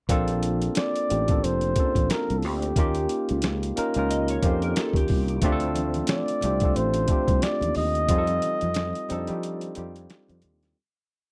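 Electric piano, fretless bass and a boom bap sampler-style drum kit start together at 0.1 seconds, setting up a soulful, relaxed neo-soul and R&B groove at 90 BPM in Bb major, with a swung sixteenth-note feel. The drums are compressed, pitched down and gritty, with a thumpy kick, a medium-tuned snare and a tape-warm character, sitting up front in a slow sixteenth-note groove. The barky tine electric piano, bright and clean through a combo amp, plays rhythmic rootless chords with grace notes, while the growly, punchy fretless bass, carrying an ensemble chorus, lays down a laid-back line beneath a Bbmaj9, Eb9, Dm7, F13 progression. A mellow, breathy flugelhorn enters at 0.8 seconds with a jazz-style solo melody built on call phrases and scooped notes, and a slightly broken-up, lo-fi electric guitar with analog chorus adds short picked fills between phrases from 4.1 to 5.4 seconds. Very quiet congas with a damped, band-limited vintage tone bring soft touches from 5.6 seconds, and the piece fades out from 8.1 seconds, closing on a break in a dry, close 1970s-style studio sound.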